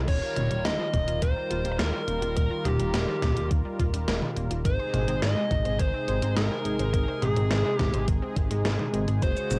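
A brassy, detuned analog pad with chorus, tremolo and sidechain pumping opens this nostalgic, moody synthwave fragment together with a bright analog pluck playing arpeggios in the background through chorus and analog delay and a glossy, up-front synth bass with tube saturation, while a dark, fuzz-distorted lead guitar carries the melody through tape echo over a thumpy electronic kick and a gated 80s digital drum machine of snare, toms, hi-hat, cabasa and crash, all captured as a home recording on cassette with light reverb.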